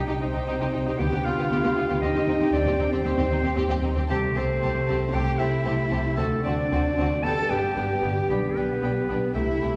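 This spirited, lively classical passage, cut from a longer piece, moves at 115 BPM in 4/4 with a rubato feel, opening on C minor before settling into G major from 4.1 s. A symphonic violin section carries the melody with lush vibrato and a soft attack, sitting in the background, while a vintage-toned, clear solo clarinet and a smooth, even studio violin section each weave a second line. A French horn section holds sustained chords with a mellow, roomy quality, and a concert harp adds fingerpicked, ringing arpeggios. Violas supply distant, expressive accompaniment, a dark, close cello section shares the bass with an up-front double bass section whose expressive playing features portamento, and the full ensemble plays throughout the 9.8 seconds. The harmony travels through G7/D, Am7/C and D7 before arriving on G and G/B, all heard from further back in the room through a wet scoring-stage reverb.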